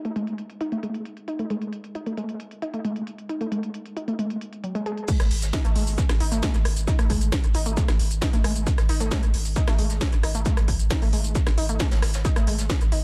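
Driving peak-time techno at 134 BPM in a straight 4/4, relentless and hypnotic, where a warbling, dusty, detuned pluck riff with chorus, overdrive, sidechain pumping and analog delay rides over a tape-warm techno kit of cracking snare, smooth low-passed hats, rim click, shaker and crash drenched in dub echo, until the drop at 5.1 seconds brings in a heavy electronic kick, a faint, distant brushed jazz kit and a thick, saturated sub bass pumping on G#1, all in an echo-heavy mix cut from a longer piece.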